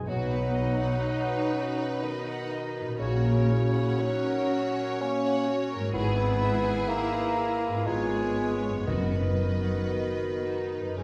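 Classical slow romantic orchestral movement in B major at 61 BPM in a rubato 3/4, lyrical and tender, where a clear, smooth violin section carries the melody over a rich second violin line, lush violas, dark expressive cellos and double basses, an up-front bassoon, mellow horn chords, an airy flute, a very quiet dark clarinet entering at 1.1 seconds, ringing harp arpeggios and soft timpani touches, all heard from further back in a wet scoring-stage reverb.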